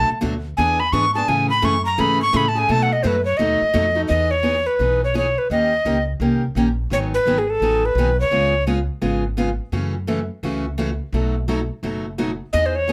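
A swinging, playful slice of acoustic string swing in the gypsy-jazz manner opens with an alto recorder carrying the melody from the first moment, its airy, close-miked wooden tone sitting up front with a crisp, chiffy attack and a short slapback echo trailing each phrase. Picked steel-string acoustic guitar accompanies throughout, bright with fresh strings and a parlour-sized voice that also sits forward in the mix. Beneath them, pizzicato upright bass supplies a woody, warm low end for the full length of the clip. The recorder's opening stretch is billed as a solo, and after a harmonic turn at 4.1 seconds the tune works through a chain of seventh chords before the recorder drops out at 8.6 seconds, leaving guitar and bass to carry the changes until a brief recorder return at 12.5 seconds. A moderate club reverb gives the trio a snug, lively room sound, and the clip ends mid-flow, cut from a longer performance.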